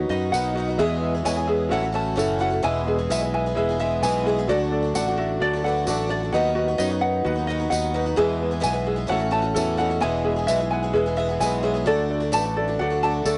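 Warm and anthemic, this short indie folk passage sets a shimmering, octave-doubled picked twelve-string acoustic guitar, with boxy body and audible finger squeak, beside a clear grand piano with long sustain, a light fingerpicked ukulele arpeggio and a direct, amped fingered electric bass. A jingly tambourine joins at 0.3 s as the chords cycle through E, A6, D and B over D#, and the piano breaks out with a brief fill from 10.9 to 11.9 s. The sound is a homespun cassette recording with light reverb and small-room ambience, its top end dulled and soft.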